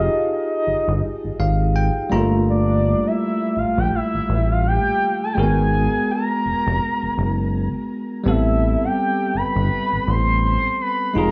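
A smooth, gliding portamento lead carries the melody with vibrato, a soft attack, chorus and tape echo in this longing, late-night contemporary R&B excerpt, which sits at 83 BPM with a swung sixteenth-note feel over Fm9, Gm9, G#m9 and Am9 chords. A bell-like tine electric piano supplies clean, bright accompaniment and plays a fill from 1.0 to 2.5 seconds, while a rubbery, bouncy square bass with a filter pluck sits prominently beneath. Light digital reverb and the wobbly pitch drift of an old cassette give the whole recording a worn, warbling character.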